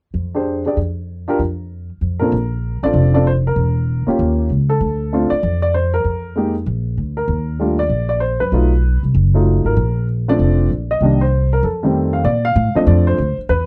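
A brisk swing in 4/4 bounces along on swung eighth notes, giving this short jazz fragment a playful, warm lilt. The upright bass comes in at 0.1 seconds, its plucked steel strings sounding woody and thumpy, and it sits up front in the mix. The baby grand piano follows at 0.3 seconds and carries the melody. Its tone is intimate and natural, with short sustain and the clatter of its action audible close to the listener. The harmony drifts through rich colours such as Fm69, Bbmaj9, B7#11 and a Cm7 to F7 turn that settles back on Bbmaj9 at 12.3 seconds. A light reverb frames the dry, close sound of a 1970s-style studio, lending the whole cut a warm, cozy intimacy.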